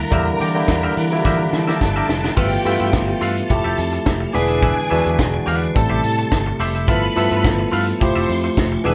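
Sultry and driving, this short disco excerpt comes from a longer piece and finds a full band playing live together in a moderately ambient room. A tight funk drum kit with a high-tuned snare, snug kick, hi-hat and crash cymbal sets a straight groove, playing a fill from 1.2 to 2.4 seconds into the second section. A growly, amped fingered electric bass anchors the low end, while a barky tine electric piano sits up front and a bright, clean, compressed semi-hollow guitar adds picked accompaniment. Lush bowed strings with soft attack and expressive vibrato carry a smooth second line above, and a piping tonewheel organ, lightly overdriven with key click, chorus vibrato and slow rotary speaker, holds sustained chords in the background alongside a jingly tambourine. The harmony moves from Em7b5 through G13, Fmaj9, E7 and Am7, lending the groove a rich, jazzy colour.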